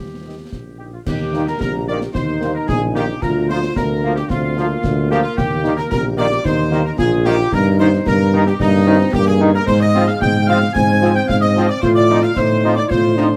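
A festive, spirited military-style march for wind band in a straight 2/4, cut from a longer piece. The warm tuba anchors the bass up front from the opening, joined at once by a dark euphonium in the background and a smooth woodwind section carrying second lines. A mellow, distant trumpet section takes the melody with light vibrato, supported by a very quiet, vintage-toned French horn section. Concert snare, bass drum and clash cymbals with dark cymbals sit close but in the background, while a pure, bright flute ensemble adds high second lines with soft attacks from 0.8 seconds. From 1.3 seconds a punchy, tight trombone section holds sustained chords, and light reverb gives the band a roomy, classical finish as the harmony moves from Eb toward F7/A.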